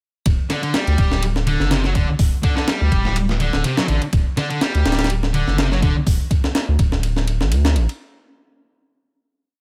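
A dry, close-up sound frames this short, gritty and raw breakbeat piece at 124 BPM with a light 16th-note swing, sitting on D and running as one drop from 0.3 seconds. A compressed, sampler-style kit with a thumpy kick and high-tuned snare plays a looped, edited break with hi-hat and ride, while a deep sine sub bass, thickened by tube saturation, carries a skipping syncopated line. Between 0.5 and 5.9 seconds a bright, double-tracked fuzz guitar, distorted and fed through delay, repeats a picked 16-step riff.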